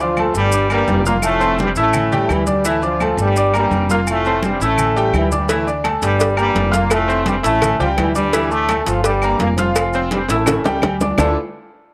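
A fiery, danceable salsa groove in straight 4/4 drives along at 169 BPM in D minor in this short cut from a longer piece, circling through a minor progression that moves from D minor through G minor seventh and F to an A seventh before settling on D minor with an added ninth. Up front, a bright trombone section carries the melody with light vibrato and a pop-style ensemble sound, while a brilliant, worn concert grand piano with deep bass supplies present accompaniment, both parts colored by a cassette-tape grit. Underneath, a woody, thumpy pizzicato upright bass with a dark steel-string tone anchors the low end. The percussion bed sets thick-skinned, hard-hand congas and woody claves in the background, along with ringing metal-shell agogo bells and timbales that sit distant in a large room, plus close, grainy maracas. At 5.5 seconds, round, low-tuned cowbell and bongos join close and dry with soft hands, and a drum fill from 10.3 seconds closes the passage. 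Light reverb and small-room ambience give the whole a homemade cassette character.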